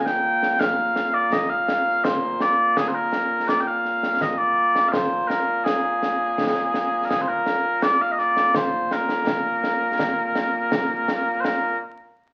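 A steady 3/4 pulse at 83 BPM, played straight, carries this short passage of Scottish traditional pipe music in B-flat mixolydian. Mellow small bagpipes take the melody from the first moment, sounding sweet and continuous with vibrato, standing up front as the solo voice across a range from Bb2 to G5. A concert snare drum and concert bass drum join at 0.1 seconds, sitting lower in the balance with an acoustic, live-room character and dark cymbals. The whole piece rests in a large studio reverb and carries the crackle and aged tone of a very old 78 rpm record. The mood is proud and stirring, and the recording breaks off at 11.8 seconds, clearly lifted from a longer piece.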